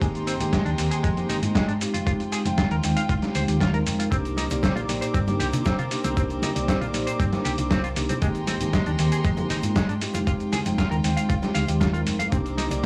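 A straight nu-disco groove is driven by a thumpy, overdriven electronic kick and a gritty, dusty soul-style sampled kit of hi-hat, shaker and snare, with a round, dark hollow-body electric bass underneath, and bright tube shaker and softly played congas join in the background at 4.1 seconds. A mellow tine electric piano with analog delay carries the accompaniment through lush ninth-chord changes, while a bright, picked clean electric guitar riff shimmers with chorus and delay, and an earthy studio violin section holds sustained chords with a sidechain pump. The mood is sleek and cosmic, set in a dry, small-room sound with a hardware-recorded edge, cut from a longer piece.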